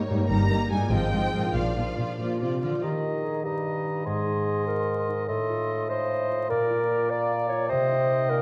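Classical orchestral music from a fast romantic movement in 6/8, spirited and cheerful with a dramatic edge. It opens with lush bowed strings: violins carry a vibrato-rich melody over a softer second violin line, while violas add expressive accompaniment with portamento, and cellos and woody double basses anchor the bass. A ringing, thumb-plucked concert harp plays arpeggios throughout. At 2.2 seconds a mellow, smooth clarinet takes up a line, and by 2.8 seconds the strings give way to woodwinds: a clear, present oboe and a pure, hollow silver flute add further lines, while a punchy yet distant bassoon supplies accompaniment beneath. The sound sits in a moderate recital hall reverb with a dark production and vinyl crackle, and the passage is cut from a longer piece.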